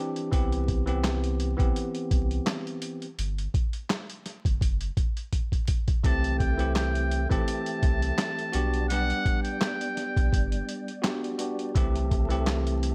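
Boom-bap hip-hop at 84 BPM with a lightly swung, gritty and moody feel, cut from a longer piece. A bell-like tine electric piano with a cassette-tape tint and a deep, round dub sub bass sit under a compressed, pitched-down sampler-style kit with a thumpy kick, medium-tuned snare, hi-hat and handclaps, all over a bed of vinyl crackle, and a drum fill at 5.3 seconds leads into the second half. From 6.0 seconds a mellow, flute-like tonewheel organ with key click and fast rotary speaker holds background chords while a breathy, buzzy metal-muted trumpet with delay plays a whispered, jazz-style solo line with scooped notes and vibrato until 10.5 seconds.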